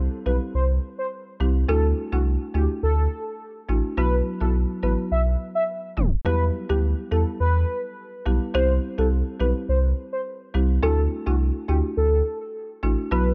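A woody, rustic folk marimba and a deep, thick, saturated sub bass open this bouncy, tough dancehall excerpt in E minor at 105 BPM. A velvety, smooth synth lead with chorus, vibrato and tape echo carries the melody up front from 0.3 seconds. A tape stop at 6.0 seconds leads into a repeat of the main section, while the harmony moves through C, Dadd9, Bsus4 and Em chords, all within a dark production and a small room.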